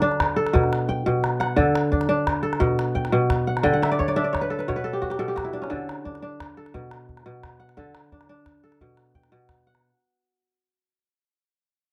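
This joyful West African traditional piece of string and xylophone music is a short excerpt cut from a longer performance, moving in 12/8 at 116 BPM in dotted quarters with a straight feel in D major, tuned slightly low to A4 = 439 Hz. An acoustic kora carries the music with ringing, crisp, fingerpicked arpeggios spanning B2 to G5, sitting up front in the mix. A small acoustic calabash supplies the percussion with a live-room character, adding a drum fill at 0.9 s before the kora takes a fill of its own at 3.6 s. The harmony circles mainly between D and B5 chords, with a brief chordless moment and a D5 along the way, while the whole passage fades out and the kora rings on alone until 10.6 s. The sound is dry and close in a 1970s studio style, touched by light reverb, giving the performance an intimate, warm glow.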